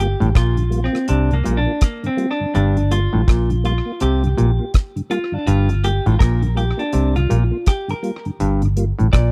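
Roots reggae in G minor at 82 BPM, this brief excerpt from a longer piece has a serious, meditative mood, with a 16th-note swing and a single Gm7 chord underpinning it throughout. A vintage muted fingered electric bass sits up front, dark, round and punchy with a foam-muted tone, while a damped 1970s drum kit plays hi-hat, kick drum and rim click with a tight kick and a rolled-off top. From 0.2 seconds a mellow clav plays a low riff, its percussive, stringy sound coming through a combo amp. A clean semi-hollow electric guitar carries a solo across the full 9.3 seconds, its picked, compressed, scooped tone trailed by tape echo. Underneath, a tonewheel organ adds soft accompaniment through chorus vibrato and a slow rotary speaker. The dry, close recording has a small-room ambience and a 1970s studio character.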